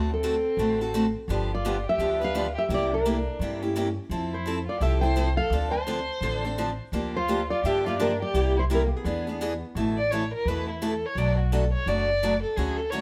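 Acoustic string swing in the jazz manouche style, this charming, playful cut from a longer piece moves at 170 BPM in 4/4 with a lilting swing on the eighth notes. A picked steel-string acoustic guitar with fresh, bright strings sits up front as accompaniment, joined by an upright bass whose pizzicato gut strings give a woody, thumpy bottom. The melody falls to a fingerpicked nylon-string guitar, full-bodied and deep in a classical way, with audible finger squeak, until it stops at 9.6 seconds. A single bowed violin, dark in tone and expressive with vibrato and portamento, carries a second line alongside it and takes a solo from 9.8 seconds as the harmony settles into A major. The chords travel through D7, G7, C9 and Fmaj9 before turning on E7 toward Asus2 and Bm7, all captured as a band playing live in one room with light reverb.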